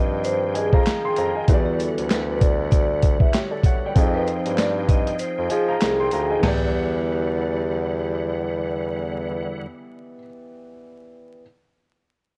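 A dark, gritty boom-bap hip-hop fragment at 97 BPM with a swung feel opens on ringing, metallic vibraphone melody with slow motor vibrato and delay, over a mellow, woody upright piano with audible action noise and cassette-tape character, bright reedy tonewheel organ chords with key click and fast rotary speaker, and an up-front bassoon bass with light vibrato, all moving between Fm9 and Em9. At 0.2 seconds a compressed, pitched-down sampler-style kit arrives with a thumpy kick, high-tuned snare, hi-hat, handclaps, toms and crash, backed by a faint saturated tube shaker and woodblock. The kick drops out from 5.2 to 6.4 seconds, the drums stop at 6.6 and the percussion at 6.7, leaving the melodic parts in a studio reverb coloured by worn, warbling tape, vinyl crackle and drifting pitch.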